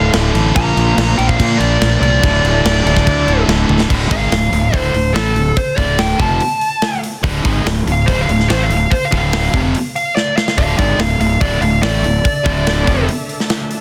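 A dark, smooth lead guitar with overdrive and tape echo carries the melody and launches a solo at 3.9 seconds in this menacing, driving hard rock excerpt at 144 BPM in D minor, riding over a bright, double-tracked distorted guitar riff, a growly, punchy fuzz bass sitting up front, a tight metal drum kit with a medium-tuned snare and a soft-clipped kick, and a gritty, very quiet overdriven tonewheel organ holding sustained chords that drops out at 3.9 seconds and returns at 10.6, set in a small room with a dense, heavily limited modern master.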